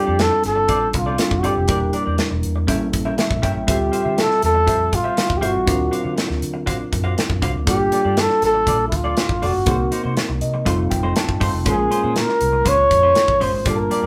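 A polished studio sound with moderate reverb captures a band playing live in one room, in this upbeat, breezy 1980s jazz-funk pop excerpt at 120 BPM in a straight 4/4. A breathy, intimate flugelhorn sits up front with the melody, its soft attack, scooped notes and vibrato riding over a mellow tine electric piano that adds fills around 2.9 and 10.2 seconds, a compressed, clean electric guitar riff with a dark, scooped tone, and a round, foam-muted fingered bass. An up-front acoustic drum kit with a tight kick, medium-tuned snare and hi-hat keeps time beneath jazzy chords moving from F6 through Em7b5, A7b9 and Dm11 to Gm9, F7 and Bbm9.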